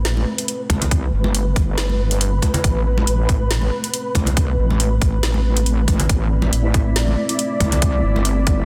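A heavy, saturated wobble bass with a detuned sawtooth edge sits up front in this brooding, meditative deep dubstep excerpt, its half-time swing anchored by a tight, layered electronic kick that enters at 0.7 seconds. A dark, full-bodied analog pad holds sustained chords with chorus, while a grainy, flickering granular texture drifts in the background with its own reverb. A garage kit adds a woody snare and metallic hats in a small room, and high-tuned congas ring in the background through dub echo, all over a dense, heavily limited master.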